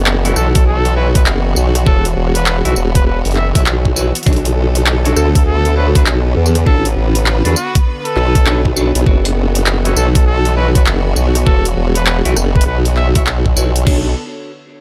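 A lush, bowed string section holds sustained chords in the background with sidechain pumping, while an up-front, saturated formant-sweep wobble bass with chorus moves underneath from the very start of this gritty, funky glitch hop excerpt, a swung drop cut from a longer piece that shifts between F#7sus4 and Bm7. Overdriven electronic drums bring bright hats, handclaps, rim clicks, tambourine and crash, anchored from 0.6 s by a knocking kick, as a clean, picked electric guitar adds stabs coloured by phaser, tape echo and sidechain pumping. A solo trumpet in classical style carries the melody from 0.4 s to 13.2 s, its tone roughened by vintage 12-bit sampler grit and tape echo, inside a digital ambience.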